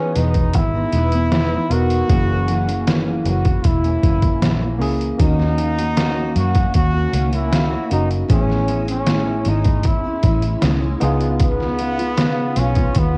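A straight 4/4 pulse at 77 BPM is set by a gritty, pitched-down trip hop sampler-style drum kit, sitting up front with a thumpy kick, medium-tuned snare and hi-hat, overdriven and tape-saturated, entering at 0.2 seconds alongside a dark, round, foam-muted electric bass. This hazy, laid-back slice of indie and bedroom pop, cut from a longer piece, drifts through Emaj7, F#7, D#m7, Amaj7 and C#7 with little reverb and the soft grain of a home cassette recording. A full-bodied jumbo steel-string acoustic guitar with fresh strings is picked beneath, thickened by ensemble chorus and a warbly pitch drift. Further back, a worn, slightly out-of-tune tine electric piano sits lightly overdriven through a combo amp. Over the top, a brilliant, punchy, close-miked trombone carries the solo melody with vibrato, touched by subtle chorus and tape echo.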